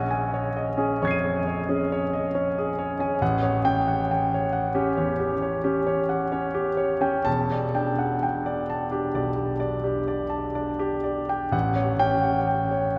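A clear, intimate grand piano sits up front, its natural tone carrying audible action noise as it spans the keyboard from E1 to D#7 in this nocturnal, hazy impressionist solo excerpt. The playing moves in a slow, rubato 9/8 at about 40-46 BPM by the dotted quarter, tuned to A4 = 441 Hz, with harmonies drifting from A#m11 to A6 and on to Em11 at 7.3 seconds. A long cathedral reverb of about 5.5 seconds bathes the piano, and the sound is rolled off above 10.4 kHz.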